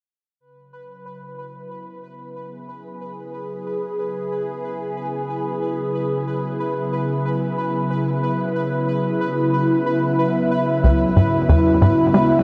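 At 0.4 seconds a swirling, detuned analog pad fades in on a sustained C# minor chord, its phaser and chorus drifting through a shimmer reverb while a pulsing, triangle-toned gated texture fades in alongside it on a single high note. This mysterious, cosmic ambient space music moves in free time and sits in a huge, wet reverberant space. At 10.8 seconds a tight, nasal sequencer bass enters up front with a punchy, plucked sawtooth riff coloured by lush chorus and delay, driving the excerpt to its cut-off point.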